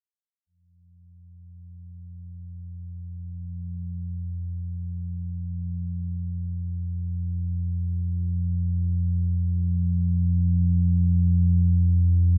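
Ambient in free time, this desolate, dark excerpt features a solo deep rumbling drone, detuned and wave-folded with a slow attack and long release, entering at 1.2 s and holding up front from F2 to F3 until 12.4 s, bathed in its own reverb and a huge, wet room with a 7.9-second decay.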